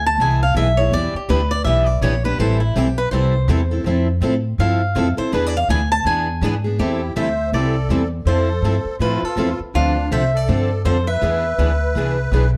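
Swung eighths in 4/4 drive this fiery, bittersweet excerpt of acoustic string swing, with a bright, boxy picked swing guitar carrying the melody up front over a woody, thumpy gut-string upright bass. A warm, fresh-stringed steel-string acoustic guitar takes a solo for the first 6.8 seconds, while a second swing guitar with audible finger squeak picks out accompaniment in the background. At 6.8 seconds a dry, close-miked musette accordion adds a reedy, shimmering second line, all set in a dark production with moderate studio reverb.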